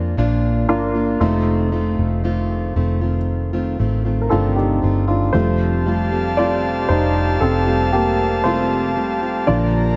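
Tender and hopeful, this slow pop excerpt at 58 BPM pairs a present, up-front baby grand piano with a fingerpicked steel-string acoustic guitar's full-bodied arpeggios and a dark, round, foam-muted vintage electric bass over Bb and F7 chords, until at 5.3 seconds the piano takes a solo as an airy, breathy pad with chorus enters with sustained chords, all set in light reverb and studio ambience.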